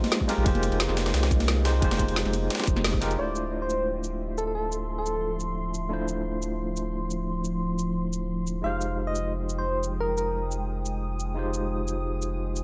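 Liquid drum and bass with a rolling, soulful feel, this excerpt opens on a drop where a gritty, pitched-up sampler-style breakbeat kit with ride and snare, background congas and a tight electronic kick stack over a drum and bass kit of woody snare, bright hats and shaker, before those extra drum layers fall away by 3.1 s, leaving a deep, round sub bass, an up-front, barky, overdriven tine electric piano with fast tremolo and tape echo, and an ethereal, airy pad pumping with phaser and ensemble chorus beneath a gentle, keys-like FM synth lead that first enters at 3.2 s.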